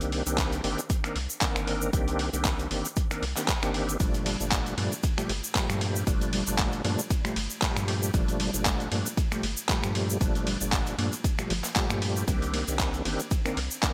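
Moody, smooth deep house at 116 BPM in G minor with a light swing, cut from a longer piece and moving from Cm9 to Gm9 and back to Cm9. A reedy, lightly overdriven tonewheel organ plays up-front stabs with key click, chorus vibrato, slow rotary speaker, sidechain pumping and delay over a round, dark analog bass, while a gritty sampler-style kit of finger snaps, handclaps, hi-hat and ride, given overdrive and gated reverb, sits beside a grainy tube shaker and a punchy, layered electronic kick that enters at 0.4 seconds. From 4.0 seconds a very quiet, soft pluck adds gentle arpeggios, all within a bright 1980s-style digital production with light reverb.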